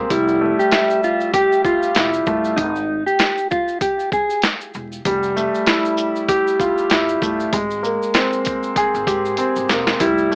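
Confident and nostalgic, this boom-bap hip-hop clip rides a swung 97 BPM groove in 4/4, with a dark, long-sustaining baby grand piano up front, colored by cassette tape and filtering, moving through Fmaj9, Em and Abmaj9 over a woody pizzicato upright bass. A gritty, pitched-down sampler kit with a thumpy kick and medium-tuned snare drives the track, with a break from 2.6 to 5.1 seconds and a fill at 9.4 seconds, while a grainy tube shaker sits in the background. A clean, fingered electric guitar carries a short tape-echoed melody until 4.4 seconds and returns at 10.0 seconds, and the whole mix has vinyl crackle, an AM-radio tone and moderate studio reverb.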